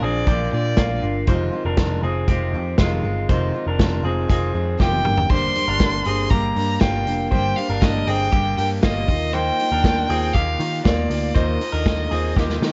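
A straight 4/4 pulse at 119 BPM drives this youthful, breezy slice of jangly indie pop, cut from a longer piece, with a vintage drum kit of punchy kick and dark cymbals entering at 0.3 seconds and fills at 4.8 and 12.4 seconds, over a round, foam-muted picked bass and a full-bodied picked dreadnought acoustic guitar moving through Bb, Fm7, Gm and Ebsus2. An electric guitar through a small old amp adds slightly broken-up, compressed arpeggios, while a single up-front violin, rich with vibrato, sounds briefly at the start and returns at 4.8 seconds to carry a smooth, even bowed melody. The dry mix sits on worn, warbling cassette tape with drifting pitch and a dulled top end.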